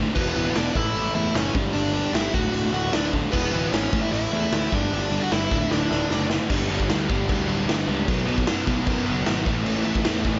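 Punk rock at 152 BPM, energetic and rebellious, this short cut drives a biting, double-tracked overdriven guitar riff over a growly fuzz bass and a raw garage drum kit with a punchy kick, gritty saturation and a pumping stone-room sound, all played straight in 4/4 through chords like E5, A, G5 and D. A dark, smooth lead guitar carries the melody with overdrive and tape echo until 6.3 seconds, as a drum fill leads into a new section at 6.5 seconds built on G5, B5 and A5. The mix is dry, with the drums and rhythm guitar up front, and a dull top end.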